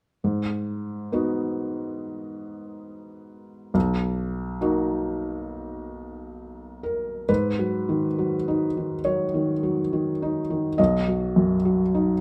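Classical in feel, this short, hopeful and tender fragment, cut from a longer piece, moves at a rubato 69 BPM in 4/4, tuned slightly above standard pitch with A4 at 441 Hz. A felt-muted upright piano is the only voice, playing an accompaniment part from 0.2 to 12.2 seconds across a range from B1 to D#5. Its sound is soft, mellow and intimate, with a thin felt layer dulling the hammers and the noise of the action plainly audible up front. The harmony rests on G#m7 before shifting to Bmaj7, then returns to G#m7 at 7.3 seconds as a second section begins and settles onto a plain B chord. A light reverb gives the close, cushioned tone a little air around it.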